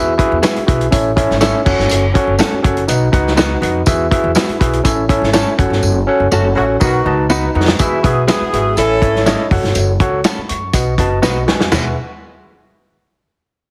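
Uptempo 1960s-style soul in E major at 122 BPM, this uplifting, danceable excerpt is built around a gritty, overdriven tine electric piano pushed up front over a woody, dark pizzicato upright bass and a tight, mid-forward soul drum kit with a rolled-off top, while a clean, scooped direct-recorded electric guitar adds background stabs and a jingly, vintage tambourine rides along. The chords cycle through Eadd9, A, F#m and B, and a drum fill with a band accent runs from 5.8 to 7.8 s, during which a distant, roomy jazz-style horn section enters on a second line at 6.3 s. The whole mix sits in light small-room reverb with a heavily compressed radio sound.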